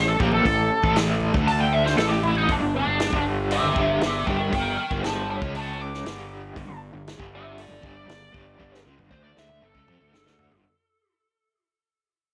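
Trippy and dark, this psychedelic rock excerpt moves at 118 BPM in a straight 4/4, fading out across its full 10.6 seconds as it is cut from a longer piece. A lead guitar through a small cranked amp carries the melody as an up-front, picked solo from start to finish, soaked in wah, overdrive and tape echo. Beneath it, a double-tracked crunchy overdriven guitar plays a tremolo-shaded riff, while a round, fuzzy fingered electric bass adds its overdriven low end. A very quiet tonewheel organ with key click and a slow rotary speaker holds fat, clean chords only until 2.5 seconds, and faint, distant congas with a thin, bright skin join it from 0.2 seconds until that same point. A vintage acoustic kit with a punchy kick, medium-tuned snare and rolled-off top enters at 0.2 seconds and closes with a drum fill from 8.6 seconds, the harmony shifting through A7, D5, Gm, C#5 and Gsus2 in a moderate spring reverb.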